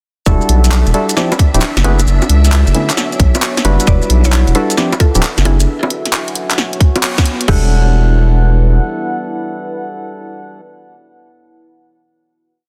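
A deep, saturated sub bass skips through syncopated lines up front beside a tight, overdriven two-step kick, anchoring this soulful, skippy UK garage piece. A garage drum kit adds a cracking snare, claps, bongos, crash and swung hats, and grainy maracas shake sixteenths in the background. Hollow, organ-like stabs with chorus and tape colour push syncopated chords, a silky string machine holds a high note early on, and a moody ambient pad with reverb and sidechain pumping shifts slowly underneath, while from 3.9 seconds a woody mallet-like pluck repeats a riff in thirds and sixths before a band accent at 7.0 seconds and a final chord from 7.5 seconds.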